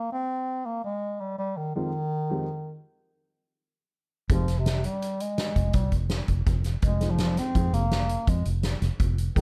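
Progressive instrumental band music in a driving, tense 7/4 at 166 BPM in F minor, this excerpt holding on Fm7 opens with a solo bass clarinet, up front and jazz-styled with light vibrato and scooped notes, before a dark, boxy baby grand piano with audible action noise and plate reverb enters at 1.8 seconds, followed at 4.3 seconds by a round, foam-muted fingered electric bass and a roomy soft-mallet drum kit with a punchy kick, all within a dark, warm, lightly reverberant production.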